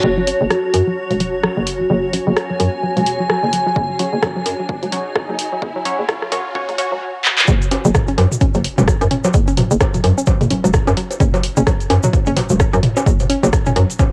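Quirky and hypnotic, this minimal techno excerpt at 129 BPM swings its 16ths as a hollow, bouncy square pluck riff and a knocking FM bass pump against a cloudy, evolving granular pad, muted dub chord stabs with 12-bit grit and tape echo, a background reverse cymbal and riser, and tape-warm analog drum machine handclaps, hi-hat and rim click. A punchy electronic kick enters at 3.8 seconds during the filter-swept build-up, and after a drum fill at 7.2 seconds the drop at 7.5 seconds brings in a grainy, bright egg shaker and electronic toms, bongos and congas. The sound is a home cassette recording with moderate spring reverb and digital ambience.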